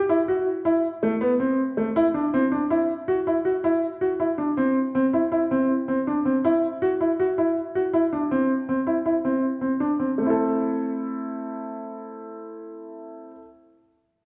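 A solo concert grand piano opens at 0.1 s, playing alone through this short fragment of a longer progressive instrumental piece. The mood is driving and brooding, moving at 161 BPM in a straight 5/4 feel in A dorian, with the tuning set to A4 = 444 Hz. The warm piano sits up front, its boxy tone carrying deep bass and a long sustain while the part stays between A3 and A4. After an unaccompanied opening, the harmony settles on A minor, moves to C major at 2.7 s, and returns to A minor at 10.2 s. A wet recital-hall reverb with a 1.5-second decay surrounds the instrument, and the church-like space has a dark top end.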